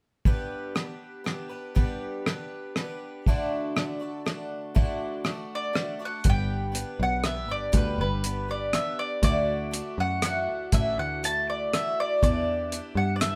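A band playing live in one small room, with a moderate touch of reverb, gives this folk rock and heartland rock excerpt a close, unvarnished sound and a hopeful, open-road mood in a straight 3/4. From 0.3 s a picked twelve-string acoustic guitar carries the accompaniment, its bright, shimmering, octave-doubled tone showing fresh strings, a boxy body, a hint of swing and the odd finger squeak. Alongside it, a cloth-damped, thuddy drum kit sits up front with a dry, dark, smooth character and a rolled-off top, keeping time on hi-hat, tight kick drum and rim click. A woody mandolin enters at 5.6 s with the melody, its doubled strings sounding warm and forward in the mix. At 6.3 s a picked electric bass joins, round, direct and foam-muted, as the harmony returns to G, moves to Dadd9 and then reaches Em7.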